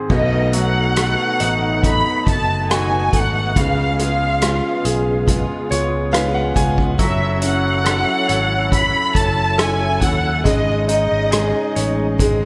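This is a bright 1980s-style digital production with light reverb and the ambience of a small room, cut from a longer pop ballad in a straight 4/4 that feels longing and heartbroken. A lush, bowed violin section carries the melody, its soft attack, vibrato and portamento giving it an expressive, singing quality, with digital delay trailing behind. A brilliant, polished concert grand piano with deep bass lays down the accompaniment and steps forward with a fill from 5.3 to 7.0 seconds. Further back, a reedy, clean tonewheel organ holds sustained chords with chorus vibrato, audible key click and a slow rotary speaker. A picked steel-string acoustic guitar plays arpeggios colored by analog chorus and digital delay. An amped fingered electric bass and a distant, roomy drum kit played with soft mallets, with a punchy kick, crash, hi-hat and rim click, carry the piece through B7, C#7, F#m7 and a final G#sus4.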